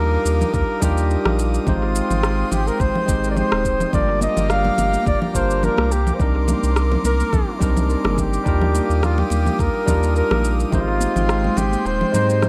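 A warm flugelhorn carries the melody up front over a barky, bright tine electric piano with analog delay, an airy, breathy pad shimmering with chorus, a round, deep sub bass, a tape-warm layer of electronic shaker, congas and rim click, and a deep electronic kick, while band-limited background congas with tape echo join at 4.2 seconds, giving this echo-heavy, spring-reverbed sunset chillout excerpt a wistful, smooth swing.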